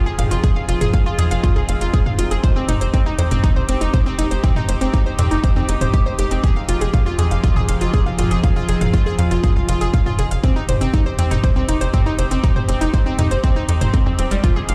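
Melodic techno at 120 BPM in a straight 4/4, this hypnotic, cinematic excerpt is cut from a longer piece and circles between Fm7 and Cm/F. A close chamber string section holds sustained chords from the start, its bowed, gut-string tone reedy and period-styled with light vibrato, breathing under sidechain pumping. Over it an analog pluck spins arpeggios with a round, bright character, its fast attack and short decay dressed with chorus, delay and a filter sweep, with touches of ring modulation and a noise layer. A tight sequencer bass arrives at 0.1 seconds, driving and wave-folded, with a filter pluck and a moving notch giving each decaying note its bite. A house drum kit of metallic hats and toms enters at 0.2 seconds, and the punchy, up-front electronic kick joins at 0.4 seconds, both tape-warm and re-recorded in a small room. The mix sits dry overall, yet it carries the sense of a big sound system in a bare room with a large studio reverb.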